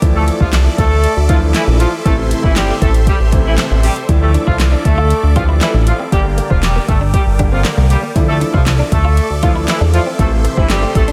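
Dance-pop at 118 BPM in D minor, driving and confident, this excerpt cycles through Dmadd9, Am and Gm over a smooth, produced R&B drum kit of soft kick, fat snare, metallic hi-hats and handclaps that sounds re-recorded in a large room. A dark, glossy chorused synth bass sits up front, while a polished grand piano, huge lush phased supersaw chords and the distant, roomy horn section carrying the melody with light vibrato all pump to the sidechain, the horns trailing a diffuse ambient delay. At 4.2 seconds a bright, twangy clean electric guitar enters in the background with a picked riff under an ensemble chorus, all set in light reverb.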